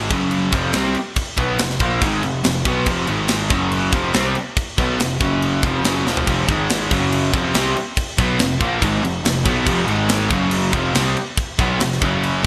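Aggressive and menacing, this hard rock excerpt at 141 BPM drives a riff from a biting overdriven guitar and a hollow-bodied semi-hollow guitar washed in lush chorus, both set back in the mix over a round, punchy fuzz bass, while an up-front, polished metal drum kit with bright cymbals, a tight kick and gated reverb hits a fill at 6.1 seconds, just before a very quiet, double-tracked distorted guitar joins at 6.3 seconds, all framed by a hall reverb and a bright 1980s-style digital sheen.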